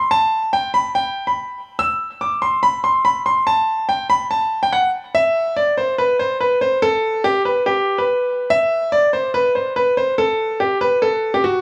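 A half-time feel at 143 BPM in 4/4 drives this hard-hitting, melancholic hip hop passage, cut from a longer piece. A concert grand piano plays alone from start to finish, sitting up front with a clear, smooth, vintage tone and a deep bass weight, moving into a new section at 5.1 s. A moderate studio ambience gives the instrument a modest sense of room.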